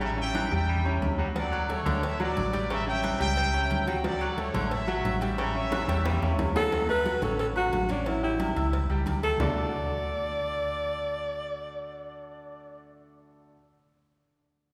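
A breathy, whispered alto saxophone takes the melody up front at 6.6 seconds, its scooped notes, soft attack and vibrato giving an intimate pop-style voice to this festive, danceable salsa in D major at 179 BPM. Before that, a bright trumpet section carries the tune as an ensemble, with a punchy, vintage baritone saxophone playing a forceful second line in the background, and a drum fill leads into the alto's entrance. A brilliant concert grand piano with deep bass plays accompaniment throughout, joined by a dark, round hollow-body electric bass that sits up front. Ringing agogo bells and timbales, congas, and tight high-tuned cowbell and bongos stay in the background until 9.5 seconds, leaving piano, bass and alto saxophone to carry on. The harmony moves between A7 and Dmaj7 before settling on D, and a wet concert hall reverb wraps the band in the spacious sound of a church or concert hall.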